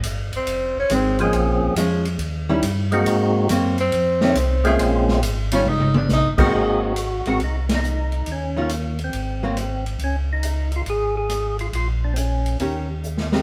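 A live stone-room sound frames this swinging, soulful soul jazz organ trio cut at 138 BPM in Ab mixolydian, where a round, dark tonewheel organ with slow rotary speaker holds the bass under a natural big-band drum kit with punchy kick and fills near 5.7 and 13.0 seconds, a clear tenor saxophone with scooped notes and light vibrato solos until 6.3 seconds, a hollow-body archtop guitar adds compressed, picked accompaniment, and a fat, lightly overdriven percussive organ carries the melody from 1.2 seconds, with a band accent at 7.6 seconds.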